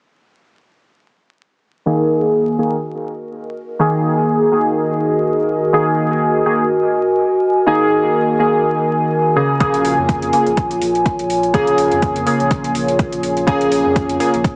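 A heavily compressed, radio-like sound with vinyl crackle, a small-speaker quality and plate reverb gives this deep house excerpt a warm, deep mood. Round, detuned sawtooth key stabs sit up front from 1.9 s, colored by chorus, phaser, analog delay and a filter sweep. A warbling, nostalgic square-and-triangle pad drifts in at 2.9 s with its own reverb, and both parts pump against the sidechain over Gb69 and Bbm7 chords. At 9.6 s an overdriven kick and metallic hi-hat with vintage 12-bit grit arrive alongside a full sine-and-triangle sub bass doubled at the octave, with the deep kick placed up front.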